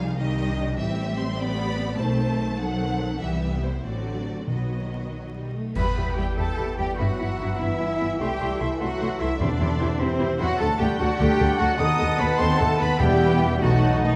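An intense, up-front double bass section drives this stormy, restless excerpt from a dramatic romantic orchestral movement in 6/8 with rubato, beneath a lush cello section, vibrato-rich violins carrying a smooth-topped melody and a second line, and a distant viola section gliding with portamento. A cymbal swell, clash cymbals and concert bass drum arrive at 3.2 seconds and timpani strike at moments. From 5.8 seconds the winds and brass join: a hollow, very quiet flute, a clear oboe and clarinet, a roomy bassoon, dark sustained French horns, warm trombone chords and bright trumpet stabs, all within moderate scoring-stage reverb and a vinyl crackle.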